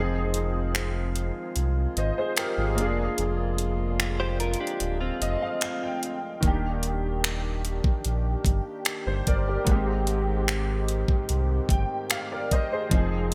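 Dreamy and romantic, this contemporary R&B passage is cut from a longer piece and set in a bright 1980s-style digital production with light reverb. A clear, intimate grand piano with audible action noise and ensemble chorus plays accompaniment and fills over sustained chords from a smooth-topped French horn section with light vibrato. A deep sine sub bass with octave sits up front, and an electronic drum kit of knocking kick, metallic hi-hat and finger snaps, treated with gated reverb, enters at 0.3 s, while a clean, direct-recorded electric guitar adds compressed, picked arpeggios with analog chorus and digital delay from 4.2 to 6.2 s over the Bb7/F chord.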